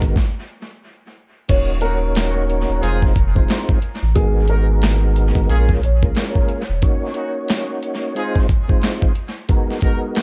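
An echo-heavy sound with light reverb frames this moody, reflective boom-bap hip-hop cut, taken from a longer piece and set at 90 BPM in Eb minor with a 16th-note swing. The dusty, sampler-style drum kit sits up front, compressed and overdriven, with a thumpy kick, medium-tuned snare, hi-hat, handclaps and crash cymbal, all trailing dub echo. A deep, round sine sub bass holds the low end until 6.8 s, when a break begins. A tonewheel organ plays throughout, its clear tone lightly overdriven and carrying key click, chorus vibrato and a slow rotary speaker. After a stop, a woody, vintage upright piano carries a mellow melody in the background from 1.5 s, and from 1.8 s a distant trumpet section in classical style adds tight stabs with light vibrato. The chords move through Ebm7, Fm7, Abm9 and Bbm7 before cycling back.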